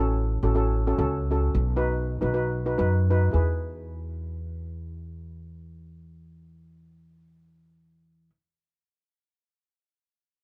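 Calypso with a bouncy, carefree mood, heard in a short clip cut from a longer piece, where a mellow, shimmering double seconds steel pan played with medium rubber sticks carries the accompaniment in a soft, smooth mid register. An acoustic upright bass with steel strings plays pizzicato underneath in a low, woody register, with both parts up front in a dark, dry production. The harmony moves from F#m/A to B and settles on E at 3.3 s as a new section begins.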